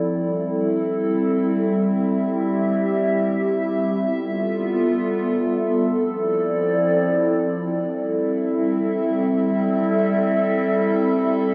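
Rhythmically free and unhurried, this ethereal, melancholic hip hop fragment, cut from a longer piece, is carried entirely by a warbly, detuned tape-like pad, dark, nostalgic and up front, its slow-attack chords drifting from Am7 through G13 and Dm9 back to Am7 at 7.8 seconds, soaked in chorus, phaser and tape echo within a dry, gritty hardware sound touched by light reverb.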